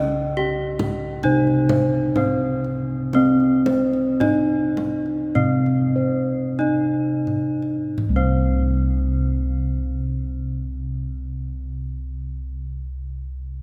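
This stately, shimmering excerpt of Javanese gamelan opens with a bronze metallophone carrying the melody, its ringing, horn-mallet tone sitting up front with a boxy edge. Bossed gongs enter at once as well: a higher set spins arpeggios with a dark, smooth, beating sheen, while a lower set holds the bass with a round, bronze weight. A deep kendang drum joins at 0.8 seconds and plays until about 8.6 seconds. In straight 4/4, the tempo moves between 42 and 74 BPM and slows through the first 8 seconds before a second section begins. A long cathedral-like reverb lets the metal tones hang and blend in the space.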